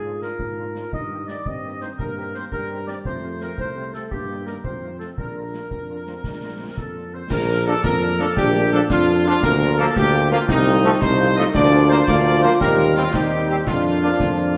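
Military-style march for wind band in a straight 6/8 at 113 BPM in Bb major, with a proud, festive mood, cut from a longer piece. A bright trumpet section carries the melody over a mellow, lightly vibrato woodwind section and a smooth-topped euphonium on the second line, while a distant, roomy French horn section accompanies and a solo tuba anchors the bass. Concert snare, bass drum and dark-toned clash cymbals enter close and acoustic at 0.2 seconds, a trombone section joins with sustained chords at 7.7 seconds as the opening section repeats, and the whole band sits in a generous scoring-stage reverb.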